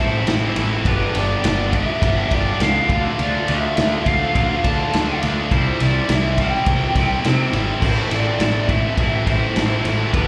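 A straight, steady 4/4 groove drives this swaggering, gritty classic rock clip, taken from a longer piece and heard as a live gig through the venue's PA with light club reverb. The raw garage drum kit comes in at 0.3 s with a tight kick, a medium-tuned snare, ride and crash cymbals, its sound dark with a rolled-off top. Up front, a double-tracked, bright distorted guitar plays the riff with slapback echo, while a fuzz picked electric bass, direct and amped, growls beneath it. Over them, a lo-fi lead guitar through a small cranked amp sings the melody in a higher register, carrying its own overdrive and slapback echo. The whole passage sits in one section, cycling through Am, G, Dm and C before landing back on Am at 7.8 s.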